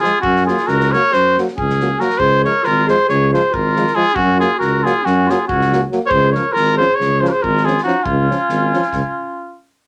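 A clear trumpet with vibrato leads this wild, exuberant Balkan brass band fragment, carrying the melody up front in a classical style. It moves in 9/8 at 277 BPM, counted in eighths, with a straight feel in Db major, tuned slightly below standard pitch, and the harmony sways between Gb and Db. A warm, roomy clarinet sits at a distance with a second line. Euphonium and trombone, both with light vibrato, fill in the accompaniment, the euphonium tucked far in the background. A mellow tuba with a soft attack and vibrato enters at 0.2 seconds, holding the bass up front. An acoustic drum kit in a small room, played with bundle sticks on a tight kick and a medium-tuned snare, keeps time softly beneath them until a stop at 9.0 seconds, after which the trumpet and clarinet ring on briefly in a moderate club reverb.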